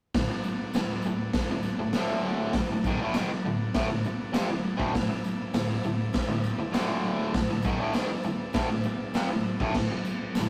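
A raw garage drum kit and a jingly tambourine open this short cut from a longer garage rock piece, joined almost at once by a biting, overdriven guitar riff and sustained combo organ chords. The mood is raw and swaggering, moving at a straight 100 BPM in 4/4 and resting on D major throughout. The drums sit up front with a punchy kick, a medium-tuned snare, hi-hat and crash cymbal, their sound gritty and lo-fi with a muffled, rolled-off top and a saturated edge. The picked electric guitar is double-tracked and also up front, playing a low riff, while the vintage, buzzy organ holds clean chords in the background and the tambourine stays very quiet and close. A small room reverb and tube saturation give the whole take the rough feel of a rehearsal-room recording.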